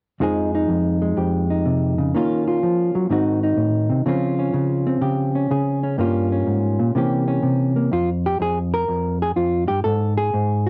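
A loose swing at 124 BPM in 4/4 carries this late-night solo jazz excerpt in F minor, played entirely by a dark, clean, fingered hollow-body electric guitar that sits up front with a compressed tone and the soft grain of cassette tape. The guitar moves through Fm7, Ebm9, Ab7b9 and Dbmaj7 before a Gm7b5 to C7b9 turnaround, then shifts to a new passage at 7.9 seconds on a suspended Fsus24 chord, with the harmony falling away at 9.8 seconds. A modest small-room reverb and the intimate feel of a home cassette recording give it a close, after-hours character.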